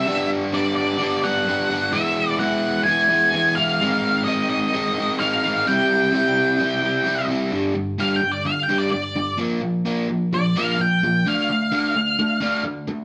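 A moderate studio reverb surrounds this short rock passage, which has the close, shared air of a band playing live in one room. At 129 BPM in a straight 4/4, the mood is restless and cathartic. A bright, double-tracked overdriven electric guitar carries the riff in a compressed, up-front tone, moving through G, E, Ab and C, then G5, Bb5 and Dm. Above it, an octave-fuzz lead guitar sits just as far forward, its picked melody heavy with distortion yet rounded and warm at the edges. From 7.5 seconds the music moves into a new section where that lead becomes a solo, before the lead drops out at 12.6 seconds and the riff guitar carries on to the cut.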